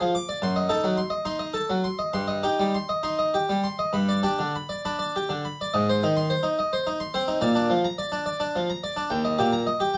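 In 12/8 with a rubato give and take, this baroque-style suite movement unfolds in a flowing, introspective mood, a short passage cut from a longer piece. A solo harpsichord plays throughout, close-miked and up front, its plucked, brilliant tone filled out by octave strings in the French style and ranging from Eb2 to D6. The instrument itself sounds dry and full, set in a moderate studio ambience with a short, contained reverberation, while the overall production leans dark and warm. The opening phrase moves from a tense F#dim7 through Cm/G to a G chord. At 5.7 seconds a new section begins, with the harmony stepping through Ab and Bb to settle on Eb near the close at 10.0 seconds.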